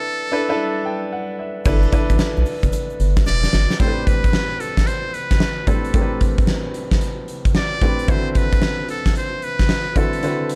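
Punchy and slick, this new jack swing R&B excerpt moves at 112 BPM in 4/4 with a swung sixteenth feel in A dorian. It opens on a break where a muted trumpet with a buzzy, brilliant tone carries the melody over a clear, polished baby grand piano, which plays a fill from 0.6 to 1.7 seconds. At 1.7 seconds a huge arena drum kit arrives up front with a fat snare, punchy kick, hi-hat and crash, joined by a round, deep analog bass and a very quiet, grainy egg shaker; the bass drops out at 3.7 seconds and the shaker at 3.8, as a drum fill closes the section. From there the trumpet, with light vibrato and scooped notes, rides over piano and drums through chords moving from Am11 to D13, and the kick falls silent for the final moments. The production is dark and warm, set in a small room ambience.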